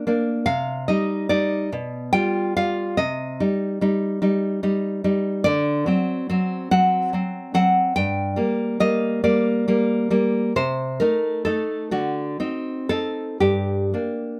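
Romantic solo classical guitar in G minor, melancholic and intimate, this 14.4-second excerpt from a longer piece drifts in a rubato 6/8 at roughly 38-49 BPM in dotted quarters, tuned to A4 = 441 Hz. The fingerpicked nylon-string guitar sits up front with a deep, acoustic classical tone and audible finger squeak, spanning G2 to G5 under light reverb. Its harmony moves from Cm through G7/B and D7 to Gm, then through Adim/C and D7b9 before settling on Gm at 13.4 seconds.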